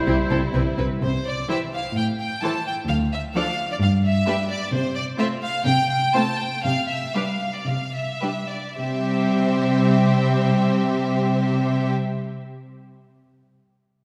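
In straight 4/4 at a quick 105-131 BPM that slows between 3.8 and 8.8 seconds, this cheerful, spirited classical-period orchestral excerpt in C major sets a rich, focused violin melody up front over a smooth viola accompaniment and a close, lush cello bass, with a distant second violin line, while a roomy solo oboe, mellow French horn chords and a bowed double bass sound only in the opening second, all heard from further back in a wet concert hall.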